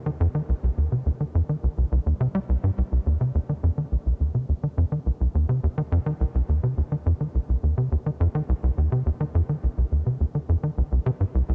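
A light reverb surrounds this short, mysterious ambient passage, cut from a longer piece, giving it a cosmic air. A tight sequencer bass plays alone from 0.1 s to 11.5 s, moving between C2 and G3 in C minor at 105 BPM in a straight 4/4. Its sawtooth and square-wave tone has a punchy filter pluck, a fast attack and a decaying tail, mellow yet driving and sitting up front in the mix. Subtle chorus and delay colour the bass as its evolving sound carries the music forward. A new section begins at 2.8 s, and the tuning sits slightly high at A4 = 441 Hz.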